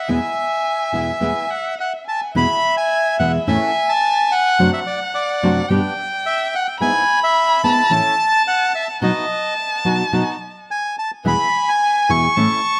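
A reedy, mid-forward bandoneon carries the melody up front with a touch of tape echo, joined throughout by a single bowed violin whose vibrato and portamento give its second line an expressive, smooth-topped sweetness. Beneath them a full-bodied, fingerpicked nylon-string guitar supplies deep classical accompaniment while a second, darker bandoneon adds soft stabs low in the mix. This passionate, nostalgic tango moves with a rubato feel, heard through close, detailed microphones and light reverb, and ends on an E chord at 11.2 seconds in a fragment cut from a longer piece.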